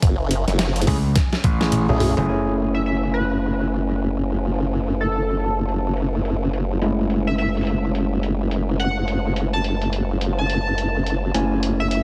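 A wobbling, detuned formant-sweep wobble bass sits up front in this swaggering, gritty glitch hop excerpt at 106 BPM in F# minor with swung sixteenths, over a pitched-down, low-passed boom bap sampler-style kit whose thumpy electronic kick plays only through the first 1.6 seconds, while an overdriven tine electric piano pumps stabs through a combo amp from 0.9 seconds, a bright, punchy slap bass adds a brief overdriven burst, and an edgy, tearing sync lead with vibrato, cassette tape colour and tape echo enters at 2.7 seconds, the mix set in lush hall reverb with a heavily compressed radio sound.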